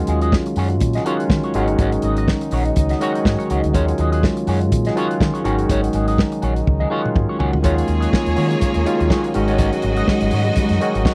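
A barky, bright tine electric piano opens this driving disco cut alongside a French horn section holding sustained chords in the background with light vibrato, and the pair is joined almost at once by the rest of the band. A dry, muffled soul drum kit sits up front with a punchy kick and a medium-tuned snare, while a dark, foam-muted fingered bass with a round, amped tone anchors the danceable groove, which has a gentle swing on the sixteenths. An electric guitar at the edge of break-up, run through a wah, adds a slightly gritty accompaniment part as the harmony moves between Ebm11 and Ab7sus4. The electric piano plays a fill at 2.3 seconds, and a drum fill leads into a new section at 7.6 seconds, where a clear, focused studio string section enters with a bowed second line. The close, 1970s-style studio sound has little reverb, and the piece is cut from a longer recording.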